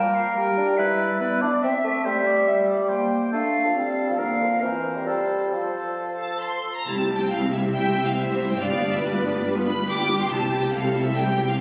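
In a straight, quick 4/4 at 140 BPM, this lively, cheerful classical-period orchestral excerpt opens in F major with airy flute, dark clarinet and oboe playing second lines over a mellow bassoon, before a lush violin section takes the melody at 6.2 seconds and the music turns to C major, joined by focused violas, rich cellos, smooth double basses and a second violin line, all heard through a phone's room recording with recital-hall reverb and compression.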